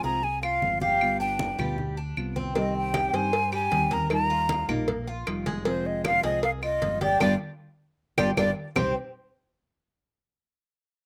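Danceable and nostalgic, this short cut from a longer Cuban son and guajira piece moves in a straight four. A breathy, hollow silver concert flute carries the melody up front with vibrato and tongued notes, and a slapback echo trails behind it. Underneath, a full-bodied nylon-string guitar is fingerpicked with audible finger squeak, while a Cuban tres plays metallic arpeggios on its double strings, also touched by slapback echo. A dark, punchy fingered electric bass anchors the harmony as it cycles from Fm and G7 through Cm and Ebadd9. Bright, thin-skinned congas sit in the background from the start, woody claves join at 0.4 seconds, and round, low-tuned cowbell and bongos with slapback echo arrive at 2.6 seconds. The band hits an accent from 7.2 seconds, all in a dry outdoor sound with little reverb.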